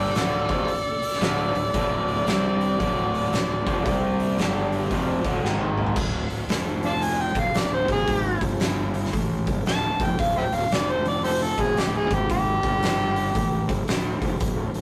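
Smoky and heavy, this swung blues rock and southern rock fragment sets a gritty, amplified harmonica melody, full of vibrato, scooped notes and tongue slaps, against a nasal parked-wah lead guitar in the background that drops out at 5.4 seconds, a bright, double-tracked garage guitar riff that stops at 6.0 seconds after a drum fill, a growly fuzz bass, and a boomy, fat-snared, low-tuned kit in a pumping room, with the harmonica taking its solo from 6.0 seconds in a rough rehearsal-room sound with saturated character.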